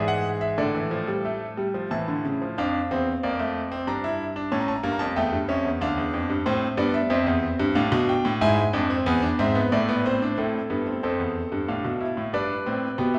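Stately and joyful, this baroque-style four-part fugue for solo grand piano moves at 92 BPM in a straight 3/4, cut from a longer piece and lasting about 13.2 seconds. The bright concert grand sounds brilliant and polished, with deep bass and a present, up-front tone spanning D2 to Bb5. A wet recital hall reverb places the listener further back in the room, while the harmony passes from Dm through E7 to Am before the opening material returns at 10.4 seconds.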